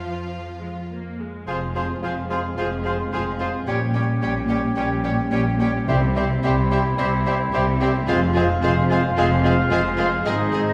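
Set in a reverberant recital hall, this stormy, dramatic excerpt of a quick classical-period symphonic movement in F minor moves at 109 BPM with a rubato feel. The string sections open together: sul tasto violins carry the melody over a lush second violin line, rich violas, a dark cello section and up-front double basses with expressive portamento. From 1.5 s, a bright clarinet, clear oboe, airy flute ensemble and bassoon join with mellow French horn chords and vintage trumpet stabs, while hard-malleted timpani briefly strike at 5.9 s as the harmony moves through a diminished chord to C and back to F minor.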